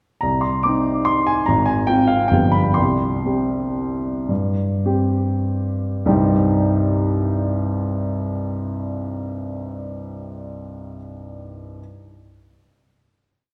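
A warm baby grand piano sits up front in a wet concert hall acoustic, its long sustain blooming into a generous reverb that gives the short recording a spacious, church-like glow. This is a complete classical piano waltz in 3/4, played solo with a bittersweet, wistful mood and a free, rubato feel. A single-line melody rides above a waltz bass, moving through a brief minor-key progression of Cm, Fm/Ab and G7 before settling on a bare C5. From 2.1 seconds the performance slows down, easing into a closing Cm chord at 6.0 seconds. That final chord rings on in the hall until 9.7 seconds, its natural tone lingering.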